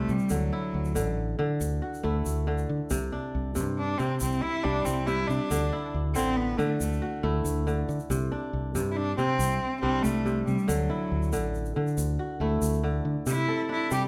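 A lilting 12/8 pulse moves at 93 beats per minute in dotted quarters, played straight, giving this passage of West African traditional string and xylophone music a warm, hypnotic sway in C lydian. The harmony rocks steadily between D and C, with a brief turn to C5 at 8.1 seconds before settling back. A bright, ringing kora spins crisp fingerpicked arpeggios up front, while a single bowed cello carries the melody with a rich, earthy, slightly nasal tone, light vibrato and an airy, biting bow. Beneath them, a fingered electric bass sits up front and direct, its dark, round, punchy notes anchoring the low end. A grainy tube shaker adds a quieter percussive shimmer from just after the start. The whole ensemble sits in a moderate recital hall reverb that lends a natural sense of space to the up-front playing.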